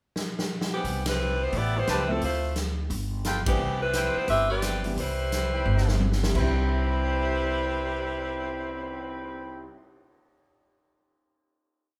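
A swinging 174 BPM big-band jazz piece in C major opens with a drum fill before the pizzicato upright bass enters in a woody two-feel, the drums keep time on the hi-hat with a backbeat from a medium-tuned snare, the up-front saxophone section carries a loose, vibrato-rich motif in four-part block voicing, the trumpet section adds syncopated drop2 stabs from 1.9 seconds, and a slightly detuned vintage upright piano comps softly in the background through a Cmaj7, Am9, Dm9, G9 progression, with a second drum fill at 5.7 seconds setting up a final held chord in a lightly reverberant live room.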